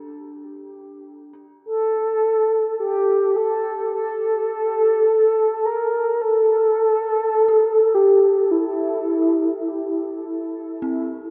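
Ominous and vast, this ambient excerpt drifts at 52 BPM in 4/4 over a Dsus4, with a dark, detuned synth bell playing eerie, inharmonic arpeggios between C4 and G4, its chorus and tape echo trailing behind each fast, decaying strike as it fades out across the first 10.8 seconds. From 1.7 seconds a mellow, horn-like sawtooth lead carries the melody up front between E4 and Bb4, round and softly attacked with vibrato, lush chorus and tape echo. A wet cathedral reverb with a 6.2-second tail wraps the dark, warm production in cavernous space.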